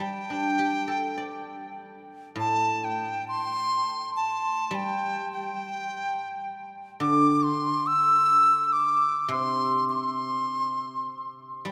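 A large bamboo dizi and a guzheng begin together in this festive, graceful Chinese chamber piece, cut from a longer work in the G zhi mode at 104 BPM in 4/4 with a free, rubato feel. Up front, the dizi carries the melody between G5 and E6 with a bright, pure tone, a buzzing membrane, tongued notes, vibrato and a slightly unsteady quality. Beneath it, the mellow, fingerpicked guzheng supplies ringing, silvery accompaniment as the music moves into a new section at 2.4 seconds, the whole ensemble bathed in a vast, echoing cathedral reverb.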